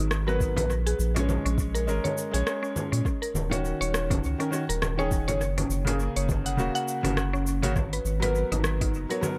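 Swung sixteenths in 4/4 carry this earthy organic downtempo excerpt: a deep, round analog bass and a felt-muted upright piano with audible action noise and a delay-tinged, intimate touch both pump with the sidechain up front, while a woody FM mallet-like synth pluck spins arpeggios through chorus and analog delay. An organic electronic kit of cabasa, congas, smooth hats and rim click shares its overdrive with a soft electronic kick, and a very quiet, bright frame drum enters at 0.6 s, set in an echo-heavy mix of light reverb and digital ambience as the chords move from Abm9 through Bbm7 and Ebm7.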